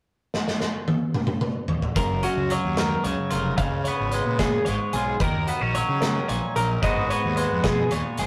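A rough rehearsal-room recording with warm saturation and a moderate booth ambience frames this playful, bright slice of math rock and midwest emo in F# major, moving at 74 BPM in a straight 6/8. A loose indie drum kit sits up front with a punchy kick, a medium-tuned snare and a rolled-off top, and it opens with a fill before three parts enter at 2.0 seconds: a twangy, scooped electric guitar carrying the accompaniment, a clean, compressed twelve-string electric guitar playing arpeggios, and an overdriven fuzz bass. The chords move through F#maj7, C#7, D#m7 and G#m9, with the drums' pumping room sound around the band.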